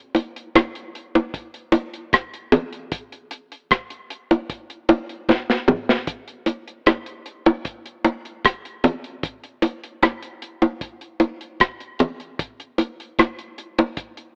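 Warm and sunny, this short reggae excerpt moves at an unhurried 76 BPM in a straight 4/4 feel. Round, low-tuned bongos open the groove, played with hard hands and heard close and dry at the front of the sound, running from 0.1 to 14.0 seconds. A deep reggae drum kit joins almost at once, its dark, smooth tone carried by a tight kick, a medium-tuned snare, rim clicks, hi-hat and toms, with a rolled-off top that keeps it mellow and up front. A drum fill arrives around 5.3 to 6.1 seconds before the kit settles back into the groove. The whole piece has the rough feel of a home demo with light reverb and a lo-fi, AM-radio character, and it sounds cut from a longer performance.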